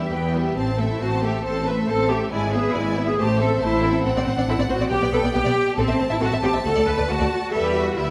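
A clear, focused cello section sits up front from 0.1 s, while a lush, even double bass section anchors the low end of this spirited, graceful classical-period movement for string orchestra, taken from a longer piece and moving at a quick 138 BPM in 4/4 with a rubato feel. Above them, a close, rich violin section carries the melody with vibrato, a more distant second violin line moves smoothly underneath, and a warm viola section fills in the accompaniment as the harmony moves from Em through Am, E7/G#, D7/A and G/B before returning to Em. The whole ensemble is bowed and set in a wet recital hall reverb with a 1.5-second decay.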